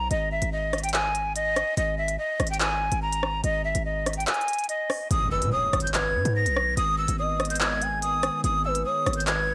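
A half-time drill groove of crisp hi-hats, handclaps and rim clicks, with the kick falling silent from 4.3 to 5.1 s, drives this tense, cold hip hop excerpt as a breathy, bright jazz flute with vibrato, chiff and tape echo carries the melody over a punchy, heavy 808 bass; an electronic impact lands in the background at 5.1 s, a smooth, gliding portamento lead enters at 5.3 s, and a deep, moody detuned pad warbles in at 6.7 s, the whole piece captured as a home cassette recording with light reverb and digital ambience.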